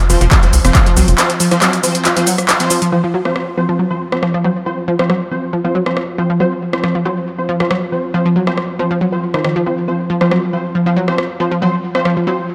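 A punchy analog drum machine of handclaps, hi-hat, rim click and shaker, re-recorded in a large room, drives this relentless, dark peak-time techno excerpt at 138 BPM, with a tight sawtooth sequencer bass and an electronic kick appearing only briefly near the start (the kick from 0.3 to 0.8 s), while a round, detuned analog pluck riff with overdrive, tape character and delay sits up front. An aggressive, warbling rave stab with tape echo opens into a filter sweep from 2.9 s, all over a very quiet, deep, moody ambient pad drone under light digital ambience.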